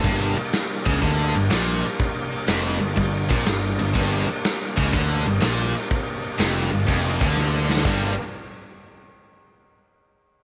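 A swung 4/4 groove at 123 BPM drives this heavy, brooding blend of blues rock power trio and southern rock, set in G minor and resting on a G minor chord. A big acoustic rock kit sits up front with a punchy kick, a medium-tuned snare and crash cymbal in a bright stone room, capping its run with a fill from 7.4 to 7.9 seconds. A tight, double-tracked distorted guitar plays a picked riff in its low register, sharing the front of the mix with the drums. A growly fuzz bass, picked and overdriven, carries the bottom end with a direct-and-amped tone. Behind them, a thick, gritty tonewheel organ holds sustained chords through a slow rotary speaker and chorus vibrato. The whole cut, lifted from a longer piece, sits in light studio reverb, with the opening section giving way to a new one at 7.9 seconds.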